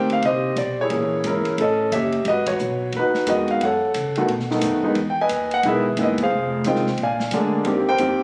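Jazz piano trio in a swinging, warm mood, taken at a brisk 178 BPM in 4/4 with a swung eighth-note feel, cut from a longer piece. A concert grand carries the melody from D3 to G#5, sitting up front with a natural tone and deep low end. Beneath it, a pizzicato upright bass with gut strings gives a woody, thumpy bottom line, while an open jazz drum kit of hi-hat, kick, ride and snare adds a dark, smooth pulse with a boomy kick and a rolled-off top. The trio hits band accents at 2.4 and 6.1 seconds over a harmony that moves from Eb6 through chords such as A7#11, Emaj7 and Bb7 before returning to Eb6. Captured on a phone in the room, the sound has light club reverb and compression that give it an intimate, live-set character.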